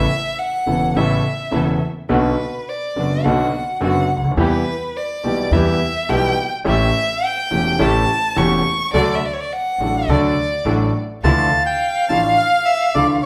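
A passionate violin solo with vibrato and portamento leads this tense, rubato tango excerpt from the start, set over clear, deep-bassed concert grand piano, woody pizzicato upright bass and veiled, muted string stabs in the background, all played live in one large, reverberant studio room, until a reedy, close-miked bandoneon takes the melody up front at 11.2 seconds as the harmony shifts from D to a darker Dmadd9.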